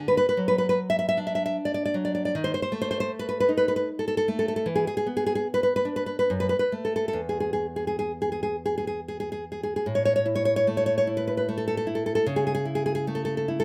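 A fingerpicked nylon-string guitar sits up front in this tender, romantic solo classical piece in A major, its full-bodied acoustic tone carrying finger squeaks over light reverb. Played in 3/4 with a rubato feel drifting between 64 and 78 BPM, the short cut from a longer work moves through D69, B7b9/D#, and F#m. Around 9.9 seconds it settles into a new passage on A5 and A/C#, spanning E2 to E5.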